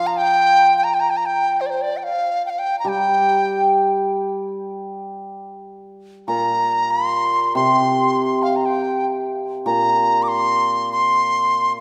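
Rubato and unhurried around 71 BPM in 4/4, this graceful, wistful Chinese traditional chamber piece in G yu mode sets a reedy large dizi, its buzzing membrane and tongued, vibrato-tinged melody sitting up front, over a shimmering, ringing hammered dulcimer accompaniment low in the register, both bathed in the generous reverb of a concert hall across a short passage cut from a longer work.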